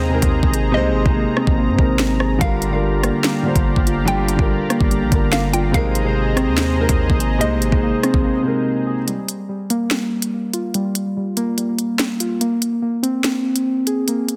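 A dense, heavily limited modern mix with light digital reverb carries this tense, menacing half-time drill cut, where a dark, boxy concert grand piano with audible action noise and muted, felt-like synth keys with chorus and delay sit up front over a smooth, detuned analog pad. A punchy, heavy 808-style bass and an electronic drill kit with a knocking kick, sharp snare and crisp hats drive the groove, the hats dropping out briefly until 2.4 seconds, while a hollow, warbling square-wave pluck adds a bouncy second line in the background. At 8.2 seconds the bass and pluck fall away, and after the piano and pad stop the keys and drums carry on alone to the end, cycling between Abadd9 and Gm7.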